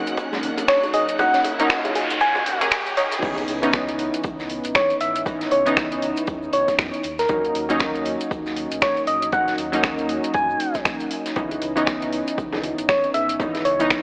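A dry, gritty recording with an AM radio character sits inside a lush hall reverb, framing a late-night, deep house excerpt at 118 BPM in C# dorian with a swung sixteenth feel. It opens with a build-up: a very quiet, nasal pluck plays arpeggios, a very quiet bowed violin section adds expressive vibrato texture, and a riser and noise sweep rise in the background alongside ringing bongos and congas. At 3.2 seconds the drop arrives, and a deep sine sub bass with an octave enters in the background with sidechain pumping as the chords move between D#m7 and C#m9. Up front, detuned analog keys with chorus, tape echo and filter sweeps play pumping stabs, while a gentle FM lead with vibrato carries the melody. The drums blend an overdriven, punchy electronic kick re-recorded in a large room, a layered house kit with metallic hats, snaps and crash, a very quiet big-room acoustic kit with hi-hat and snare, and a grainy egg shaker. 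The hand drums return at 11.4 seconds.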